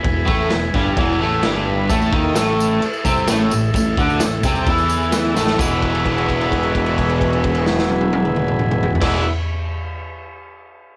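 A dry, gritty home cassette recording captures a raw, swaggering garage rock excerpt at 130 BPM in E major, led by a bright, crunchy double-tracked guitar riff up front over a round, fuzzed-out fingered bass and a boomy, saturated drum kit with dark cymbals in a pumping small room, while a buzzy vintage combo organ holds chords through spring reverb and adds fills, a jingly tambourine joins from 1.9 to 5.8 seconds, and a drum fill at 5.4 seconds leads into a held note from 5.6 seconds as the harmony returns to E.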